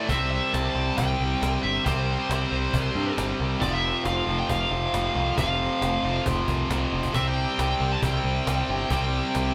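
A growling, overdriven picked bass sits up front in this driving, aggressive hard rock excerpt, entering at 0.1 seconds alongside a snappy cajon with snares ringing in a live room. Above them, a high-gain lead guitar carries the melody from the very start while three guitars (one bright and overdriven, plus a scooped high-gain part and a tight, double-tracked one further back) play the riff over power chords. The whole band sounds as if it is playing together in one room, with moderate studio reverb.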